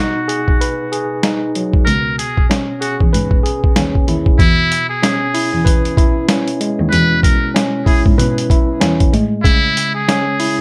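Lightly reverberant and gritty, this boom-bap hip-hop excerpt has a tough, worn character, with a swung sixteenth-note feel and a filter sweep running through its opening 4.4 seconds. A muted trumpet carries the melody from the first moment, its metal mute giving a buzzy, breathy, whispered tone in an intimate jazz style, sitting up front with plate reverb and delay. A slightly out-of-tune tine electric piano accompanies it, sounding clean yet aged through cassette tape and built-in speakers. The sampler-style drum kit enters at 0.3 seconds, compressed and pitched down, with a thumpy kick, medium-tuned snare and hi-hat that carry a tape-warm, small-room sound. After a break, a single dark cello takes the bass line at 1.9 seconds, bowed sul tasto with vibrato and a soft attack. The harmony moves from G#m7 to C#m7, then E6, and settles on Amaj7 at 9.1 seconds.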